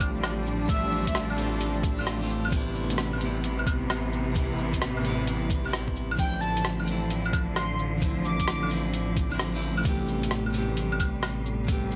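Future garage at 131 BPM with a 66% swing on the 16ths, wistful and melancholic, cut from a longer piece, where muffled, pitched-down sampler drums (a thumpy kick and an up-front kit of cabasa, claves, hi-hat and rim click in studio reverb) sit under a deep, rumbling detuned saw bass, a rich bowed string section and a clean picked electric guitar with analog delay, all three pumping to the sidechain through chords moving from F6/A to Am9, while an airy, dreamy sine lead with chorus and tape echo drifts in at 0.7 seconds and again from 6.2 to 8.7 seconds over a dry, gritty recording dusted with vinyl crackle.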